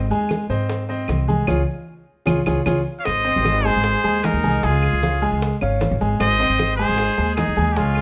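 A muted trumpet leads this sunny, danceable Cuban son and guajira excerpt, entering at 3.0 seconds with a nasal, close-miked jazz voice, light vibrato, soft attacks and scooped notes, while a punchy second trumpet with pop-style vibrato sits behind it on a lower line. Underneath, a clear, smooth concert grand piano with a vintage character and deep bass rolls out arpeggios from the start, paired up front with a dark, thumpy pizzicato upright bass on gut strings. The percussion settles in the background: low-tuned congas with a thick skin and soft hands, tight high-tuned bongos, and woody, dry claves, with grainy, mellow maracas heard close. At 153 BPM in a straight 4/4 and Ab major, the harmony moves between Ab and Db, and a drum fill with a band accent at 1.5 seconds carries the groove into the horn-led second section. Light reverb gives the whole a gentle sense of space.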